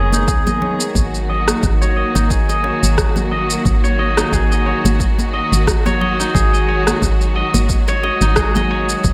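A swung sixteenth-note groove at 89 BPM anchors this earthy, meditative downtempo excerpt: a punchy, overdriven electronic kick enters at 0.3 s, layered with a gritty shaker and rim click bathed in gated reverb, while close, dry congas and bongos struck with hard hands sit in the background. A woody, round FM bass with a dark, decaying tone and lush bowed strings with vibrato both carry sidechain pumping beneath the chords G#m7 and D#m/G#. Up front, a silvery, ringing steel-string zither plays fingerpicked arpeggios through delay and a low-pass filter sweep, all within a bright 1980s-style digital production.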